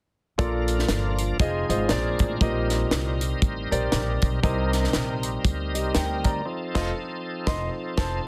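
A swung 4/4 groove at 119 BPM drives this short, uptempo gospel cut in Bb major, jubilant and uplifting from the moment the band starts at 0.4 seconds. A tight funk drum kit sits up front with a high-tuned snare, tight kick, hi-hat and crash cymbal, its acoustic sound natural in a small room. Beneath it, a pizzicato upright bass with steel strings gives a woody, growly, thumpy bottom, also placed up front. A smooth, vintage grand piano supplies the accompaniment, while a bright tonewheel organ holds sustained chords, shouting and full with key click, chorus vibrato and a fast rotary speaker. The harmony moves from Bbmaj7 through Fm7, Bb9 and Eb6/Bb to Cm7, landing on F7 for a band accent from 6.5 seconds that carries to the cut at 8.3 seconds, all within a small room reverb and a dense, heavily limited modern master.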